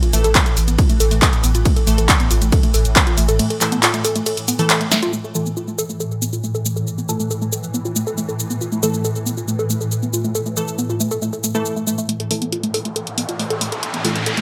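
Dark and relentless, this driving peak-time techno fragment at 138 BPM opens on a drop where a heavy, layered kick and a thick, saturated sub bass anchor a woody wave-folded pluck riff with chorus and delay, a swarming, nasal drone, crisp detuned wavetable chord stabs, and a punchy, tape-warm analog drum machine of handclaps, hi-hat, ride cymbal, shaker and snare with gated reverb, all pumping to the sidechain except the kick, which stops by 3.0 seconds, with the bass gone by 3.4 seconds, before a filter-swept build-up from 12.1 seconds brings in an up-front electronic riser.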